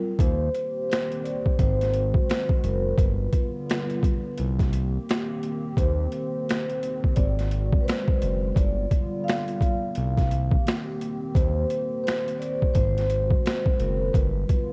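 A vibraphone played with soft mallets carries a solo through this cosy, mellow lo-fi hip hop piece, its metallic, ringing tone shaped by a slow motor vibrato, cassette tape grit and a low-pass filter that leave it airy and warm. Beneath it, an up-front boom bap sampler-style drum kit sets an 86 BPM groove in 4/4 with a 60% swing on the 16ths, mixing finger snaps and hi-hat with a thumpy kick and a high-tuned snare that sound compressed, pitched down, gritty and overdriven, as if re-recorded in a large room. A smooth synth bass enters at 0.2 seconds with a fast attack and sustained notes, its sawtooth, square and triangle blend tinged by ring modulation. From 0.6 seconds a dark analog pad holds deep, moody chords, detuned and wave-folded with a sub octave, a slow attack, chorus and a low-pass filter. In Eb major with tuning at A4 = 436 Hz, the harmony cycles through Eb6, Ab7, G7 and Cm7, all under light reverb and a cassette tape finish on this section cut from a longer piece.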